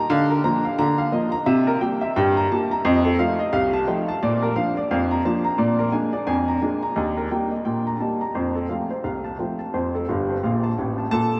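Ragtime piano excerpt, cheerful and jaunty at 87 BPM in 2/4 with a swung sixteenth-note feel, featuring a solo upright piano that is woody and up front, with long sustain and lush chorus, ranging from G1 to Bb5 through a Bb progression of Bb/D, C7, F7, Bb, Bb7, Eb and F, tuned to A4 = 439 Hz, with a piano fill at 10.1 seconds, all soaked in a huge, dreamy ambient reverb with an 8.6-second decay.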